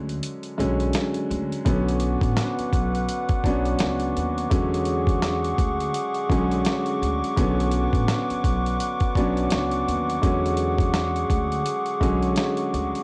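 A gritty, compressed sampler-style drum kit sits up front with a thumpy kick and medium-tuned snare, driving this tough, moody boom-bap hip-hop excerpt at 84 BPM with a swung 16th-note feel. An intimate upright piano, clear and boxy with audible action noise and a cassette-tape tint, carries the accompaniment over a dark, pizzicato gut-string upright bass warmed by tube saturation. At 1.7 seconds a deep, nasal analog pad with chorus and a slow attack joins, holding sustained chords that alternate between E13 and Bmadd9 in a homespun cassette recording with studio reverb.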